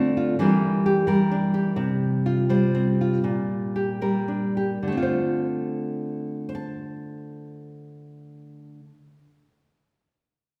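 Folk in D minor, heartbroken and reflective, moving slowly in 6/8 at around 36-44 BPM in dotted quarters and easing back over the first 4.8 seconds. A lone nylon-string guitar, fingerpicked in a classical manner, bright and up front with audible finger squeak, carries the accompaniment from 0.0 to 9.7 seconds through chords such as Em7b5, Csus4, Gm/Bb and Dm7. The playing sits in a reverberant recital hall, a church or concert hall ambience lending a lingering tail to this fragment of a longer piece.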